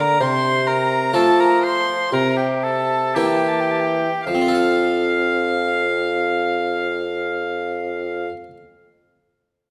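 A rich, gut-string violin sits up front with the melody, singing high in its register with light vibrato in a period style. This short classical passage, cut from a longer baroque-style sonata movement with continuo, moves in a straight 4/4 at roughly 53-66 BPM in F major, and its mood is radiant and dance-like. Beneath it a clear, present oboe carries a second line, while an airy harpsichord in the French manner supplies bright plucked accompaniment. A mellow, punchy solo bassoon anchors the bass with its own light vibrato. The music slows over its first 4.3 seconds as the harmony moves from F/C through C7 to settle on F, and a new section follows. The other parts stop at 8.3 seconds, and the harpsichord rings on until 8.6 seconds, all wrapped in the generous reverb of a recital hall.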